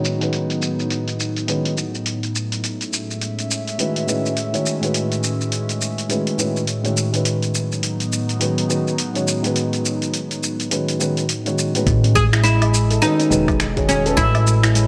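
A swung 104 BPM groove of gritty, low-passed finger snaps, hi-hat, shaker and woodblock carries this peaceful organic downtempo excerpt, where a soft felt-muted upright piano with digital delay and a warbling, detuned tape-like pad with chorus and phaser pump under sidechain over B7 and Amaj7 chords in a moderate echo-chamber reverb, until at 11.9 seconds a woody, growly pizzicato upright bass, a thumpy electronic kick and ringing handpan arpeggios with digital delay arrive, followed at 12.2 seconds by a deep, plectrum-plucked fretless oud melody trailing tape echo.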